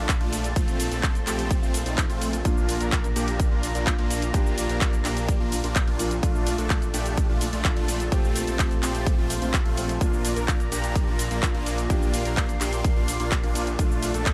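A dry, slightly lossy mix opens this euphoric, anthemic festival progressive house cut, running at 127 BPM in straight 4/4 in Bb major over chords that hover on a Bb pedal. A punchy, overdriven electronic kick sits up front with an overdriven kit of handclaps, hi-hat, ride cymbal and shaker, while a huge detuned supersaw riff with delay, a thick saturated saw bass with chorus, and a warbling vintage pad all pump to the sidechain. From 2.4 seconds a dark, mellow grand piano with long sustain and delay adds accompaniment in the background.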